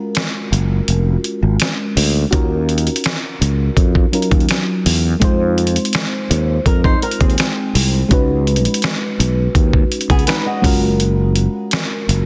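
A growly, bright fretless electric bass sits up front in this longing, late-night contemporary R&B excerpt at 83 BPM, alongside a gritty sampler-style drum kit with a thumpy kick and fat snare, though the kick drops out from 0.9 to 2.3 seconds. A soft, round FM electric piano with chorus and phaser carries the chords from Gbmaj7 through Ebm7, Fm7 and Db9sus4. A dark, fingerpicked flamenco guitar with delay and audible finger squeak adds arpeggios from 6.7 seconds before a break at 11.0 seconds, all within light digital ambience and a dense, heavily limited master.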